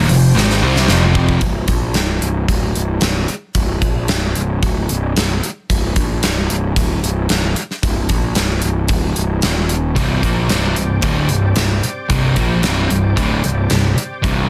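A driving, menacing hard rock excerpt opens with two overdriven guitars, one sludgy and dark and one a warm hollow-body, playing a riff behind a fuzzed, growly bass up front, while a very quiet, gritty tonewheel organ holds chords through a slow rotary speaker and a punchy gated drum kit plays a fill. At 1.4 seconds the guitars and organ drop out, leaving the bright, growly bass and the airy, polished drums with their medium-tuned snare to carry the groove in a small room. Both guitars and the organ return at about 10 seconds, all inside a dense, heavily limited modern master.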